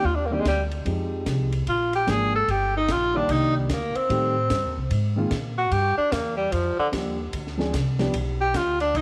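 A swung 4/4 pulse at 148 BPM drives this late-night small-group jazz excerpt, cut from a longer piece. The tenor saxophone carries the melody as a solo across the full 9.0 seconds, sitting up front yet sounding distant and roomy, with a warm jazz tone. A dark, mellow baby grand piano accompanies with smooth, vintage colour and long sustain, dropping out at 8.1 seconds. Underneath, an acoustic upright bass plucks a woody line on steel strings, while a compact cocktail drum kit plays hi-hat, kick, ride and snare with a dry sound, dark cymbals, a high-tuned snare and a punchy kick. The harmony moves from Cm9 through Fm9, Bb7 and Ebmaj7 toward Gm7 and a closing Bdim, and a moderate echo-chamber studio reverb gives the session a swinging nightclub glow.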